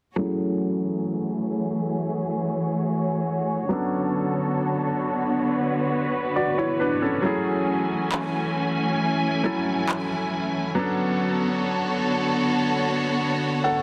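Sensual and moody, this contemporary R&B fragment, cut from a longer piece, drifts through a slow straight pulse over rich minor ninth chords, with a filter sweep running across its whole span. A clear, smooth concert grand piano with deep bass and short sustain sits up front beside a lush, bowed studio string section whose vibrato gives its close, focused ensemble sound a lyrical shimmer, both parts passing through a low-pass filter. Electronic handclaps arrive briefly at 8.1 seconds and drop out at 10.1 seconds, all set in light reverb within a dense, heavily limited modern master.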